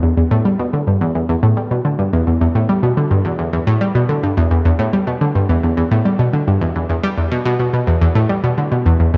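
Hypnotic and cosmic, this ambient excerpt features a lone analog pluck, round and up front with a bright, ring-modulated edge and a filter sweep, playing low through chorus and analog delay in an echo-heavy mix bathed in a plate reverb with the top end rolled off.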